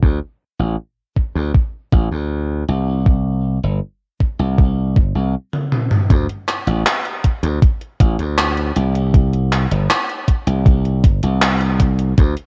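A straight 4/4 pulse at 79 BPM is driven by a thumpy, overdriven electronic kick and a bright, punchy glassy slap bass sitting low and up front, giving this dreamy, nostalgic vaporwave fragment a steady, unhurried sway. After a stop at 5.3 seconds, a gated 80s digital drum machine enters at 5.5 seconds with a fill of handclaps, hi-hat and toms, its gated reverb and overdrive adding grit as the music moves into a new section at 6.1 seconds. The dry mix carries a cassette-tape haze and a low-pass filter that soften its edges into a hazy, faded glow.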